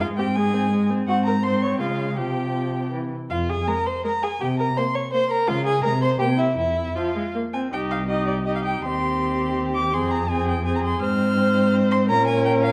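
In a quick triple metre with a freely pushed and pulled rubato feel, this stormy, dramatic classical-period movement for string quartet, cut from a longer piece, sets the first violin's focused, smooth-topped melody high above the second violin's inner line, both bowed with vibrato. The viola fills in an expressive accompaniment with portamento, while the close, up-front cello anchors the bass with its own sliding, vibrato-rich tone. A moderate recital hall reverb surrounds the four solo players, and the music turns toward new harmonic ground at 7.7 s.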